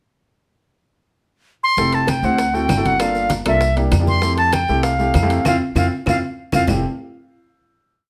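Lively and sunny, this short Afro-Cuban jazz piece opens with a brief pickup, and the silver concert flute enters just before the piano, bass and most of the percussion arrive at 1.8 seconds. Bright and reedy, the flute carries a motif-based melody up front with vibrato and a soft attack, set in plate reverb, while a polished grand piano plays syncopated chord stabs in rootless voicings. The upright bass plays a woody pizzicato tumbao that anticipates the chords, beneath low-tuned, thick-skinned congas with slaps and open strokes, tight high-tuned bongos in steady eighths with hand bell, and metal-shell timbales playing a shell pattern and bell from 1.9 seconds. Vintage, band-limited claves hold a two-bar time line from 2.1 seconds, and grainy maracas sound from a distant, large room. A band accent and drum fill lead into the final chord at 6.7 seconds.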